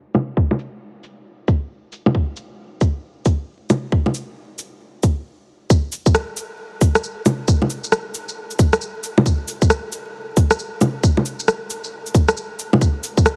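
Electronic bongos, cabasa, shaker and rim click open this ghostly, wistful future garage fragment at 0.1 s, a layered, up-front percussion bed played at 135 BPM in 4/4 with a 62% swing on the sixteenths. A tight, layered electronic kick joins at 0.4 s and sits prominently in the mix. Through the first 5.7 seconds a filter sweep moves across the drums, and the music briefly stops from 5.3 s before the second section begins. From there the kick and hand percussion carry on together, the kick dropping out just before the percussion closes the fragment. The whole mix has a heavily compressed, radio-like quality, dulled by a low-pass filter and dusted with vinyl crackle, while light reverb and digital ambience add a faint sense of space.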